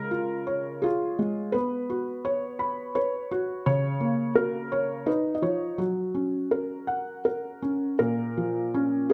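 A children's lullaby in F# major, this brief excerpt from a longer piece moves in a gentle, rubato 3/4 at about 84 BPM, with an innocent, tender mood. A felt-muted upright piano plays alone throughout, its thick felt giving a soft, dark, intimate tone with short sustain, captured up front by close, detailed microphones in light reverb. The harmony drifts through colors like Bsus2 and C#add9 before settling on F#, then turns toward A#m as a new section begins at 8.0 seconds.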